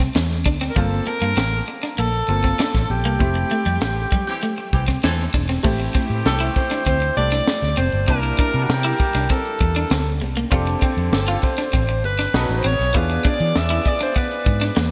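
A polished 1980s jazz-funk pop groove at 98 BPM opens on a tight funk drum kit with bright cymbals and gated reverb, a dark, round, foam-muted fingered bass, a slightly broken-up electric guitar riff bathed in lush chorus and a clear, worn grand piano in the background; very quiet, high-tuned congas ring in almost at once, a breathy, whispered alto saxophone with light vibrato takes the melody from 0.7 s, the band hits an accent from 3.2 s, and a distant, roomy horn section adds a second line from 4.3 s, all in a nocturnal, bittersweet mood within a lush hall and bright digital production.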